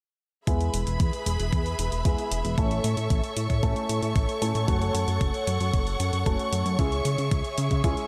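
Italo disco in E major at 114 BPM, this short cut from a longer piece has a sunny, playful mood and a straight 4/4 pulse. A thumpy, sampler-style electronic kick and a tape-toned electronic hi-hat sit in a small room, with the kick leading the mix. The fat, detuned sawtooth analog bass runs up front from E1 to C#3 with a quick pluck of attack, and a filter sweep moves across it from 0.5 to 8.1 seconds. A rich, lush symphonic string section holds bowed chords with smooth vibrato, dressed in shimmer reverb, while an intimate baby grand piano plays short stabs through a low-pass filter, delay and shimmer reverb, its action noise audible. The chords move from E to A, F#m and C#m, all parts entering together at 0.5 seconds under a light small-room ambience.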